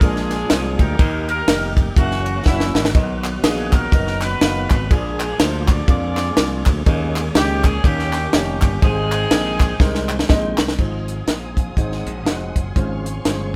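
Up-front tight funk drums with a high-tuned snare drive this soulful, reverent uptempo gospel excerpt at 123 BPM in Ab major, as a tight horn section carries the melody over bright, growly fingered bass, mellow woody upright piano and a lightly overdriven tonewheel organ on a slow rotary speaker, hollow handclaps join at 3.2 seconds, and lush bowed strings enter at 10.8 seconds, all in a live room with light reverb.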